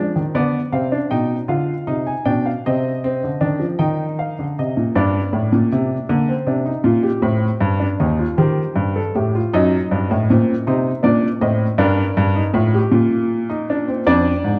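An intimate baby grand piano, close and natural with audible action noise and short sustain, carries a driving, serious baroque-style three-part fugue in 12/8 at 52 BPM (dotted quarters), tuned to A4 = 437 Hz and spanning Eb2 to G#5. The harmony moves through diminished and minor colours, from Bdim at 0.4 s through Cm, Gm, Am7b5 and a rootless F#dim7 back to Gm, before arriving on Ddim/F at 14.1 s. A reverberant recital hall and dark, warm production surround this brief fragment of a longer piece.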